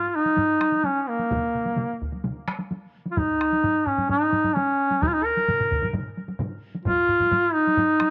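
Set in a small room with light reverb, this ceremonial, driving cut from a longer Japanese traditional taiko piece opens with a clear, vintage-toned duduk that sits up front, playing a solo folk-style melody with vibrato and scooped notes. At 0.3 seconds a close, dry taiko ensemble struck with hard sticks enters, and at 0.4 seconds a close-miked solo taiko with heavy sticks follows. From 1.3 seconds two more heavy-stick ensembles arrive: one in a small room, playing until 7.0 seconds, and another, band-limited with an old-time colour, sounding only in short bursts from 1.3 and 5.5 seconds.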